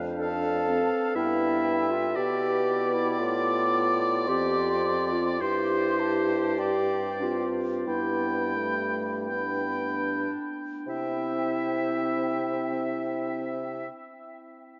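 A rubato 4/4 pulse drifts between 36 and 62 BPM, slowing through the opening 10.9 seconds of this tender, slow romantic movement for wind quintet in C major, cut from a longer piece. An airy, hollow concert flute carries the melody with vibrato high above a clear, up-front oboe second line, while a soft-attacked, mellow clarinet and a warm French horn fill the accompaniment over a roomy bassoon bass. The chords move from Dm7/F through G and F/A to a Gsus4 and back to G before settling on C at 10.9 seconds, all bathed in a vast, echoing cathedral reverb with the treble rolled off above 7.5 kHz.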